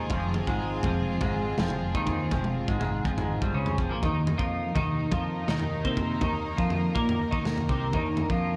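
Dark and trippy, this psychedelic rock excerpt moves at 123 BPM in F minor, shifting from Fm to Eb5 at 4.0 seconds. A bright, twangy twelve-string electric guitar sits up front with its double-tracked riff shimmering through harmonic tremolo, while a gritty, saturated breakbeat kit with a tight kick and rolled-off top comes in at 0.1 seconds. A round, punchy fretless bass stays in the background, and distant, floating bowed strings hold soft sustained chords, all bathed in a lush hall reverb that gives the mix a dreamy haze.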